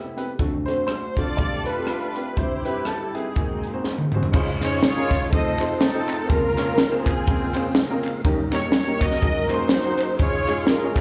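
Heard as a live club gig through the venue's PA with light reverb, this uplifting, hopeful swung gospel excerpt sets veiled, muted strings carrying the melody up front over a woody upright piano, both with slapback echo, while a crisp, punchy fusion drum kit drives from 0.2 s, a concert grand piano adds a brief melody and a tight French horn section holds sustained chords in the background until 4.3 s, when a fat, lightly overdriven tonewheel organ with slow rotary speaker takes over the sustained chords, group handclaps join at 4.6 s, and the organ adds a fill at 7.5 s.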